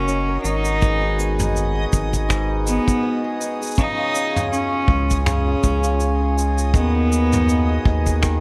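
Under a light reverb and a layer of vinyl crackle, this delicate, hopeful folktronica fragment moves at 81 BPM with a gentle swing, as an up-front, gut-toned cello carries the melody over reedy, breathing pedal harmonium chords, shimmering hammered dulcimer arpeggios trailed by digital delay, a round, deep analog bass, and a dreamy reversed texture swelling in the background, while a soft brush kit with cabasa, finger snaps and toms sets the groove and a punchy kick joins at 0.8 seconds.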